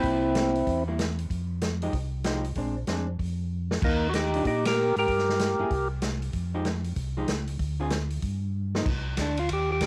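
A swinging 190 BPM groove in 4/4 drives this late-night, soulful soul jazz organ trio in C minor, with a punchy, up-front acoustic drum kit adding fills around 3.5 and 8.5 seconds, a round, mellow tonewheel organ bass turning through slow rotary and chorus vibrato, and a clean, picked hollow-body electric guitar comping darkly beneath a fat, lightly overdriven percussive organ melody that carries slow rotary, cassette tape color and plate reverb, heard in short phrases around a band accent at 4.6 seconds and a brief organ solo from 8.9 seconds, all set in a snug booth ambience on a home cassette recording cut from a longer piece.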